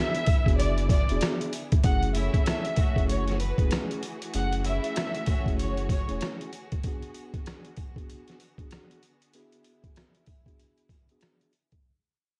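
A swung boom-bap hip-hop groove at 96 BPM in 4/4 carries this reflective, dark excerpt from a longer piece, where a gritty, compressed, pitched-down sampler-style drum kit with a thumpy kick sits up front beside a deep, round sine sub bass that stops at 6.2 s, along with a lush bowed violin section melody touched by tape echo, a mellow tine electric piano heard through its built-in speakers, background string chords with portamento, brief focused string stabs from 2.2 s, and very quiet jingly sleigh bells, all in a dry, vinyl-crackled hardware recording that fades out throughout and drops into a break at 6.8 s over G#m7b5 and F#m9 harmonies.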